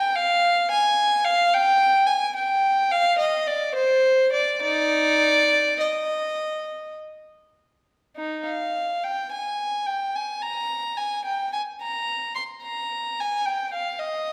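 A single bowed violin opens the recording alone, sounding up front with a rich, reedy gut-string tone and light vibrato in a period style. This is a grave, flowing movement in the manner of a baroque suite for unaccompanied violin, set in Eb major and moving in a slow triple metre of around 48-55 BPM with a free, rubato feel. The line ranges from Eb4 up to C6, carried entirely by one player. A fresh section begins at 8.2 seconds and runs to the close at 14.3 seconds, as this short passage is cut from a longer piece. The violin sits within a reverberant recital hall, likely a church or concert hall, whose lingering decay of about 1.7 seconds surrounds each bowed phrase.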